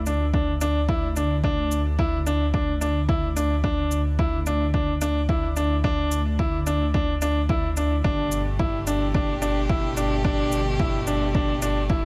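A woody, vintage-toned upright piano sits up front with a narrow, delay-touched riff, while a rumbling, detuned saw bass pumps beneath it in this cinematic, hypnotic piano-and-strings electronica cut from a longer piece. A punchy, overdriven electronic kick and a softer, gritty shaker keep a straight 4/4 pulse. At 8.0 seconds a bowed string quartet, one player per line with focused vibrato, enters with sustained chamber chords that also pump, as the harmony moves from Dsus2 to Gadd9 under light studio reverb.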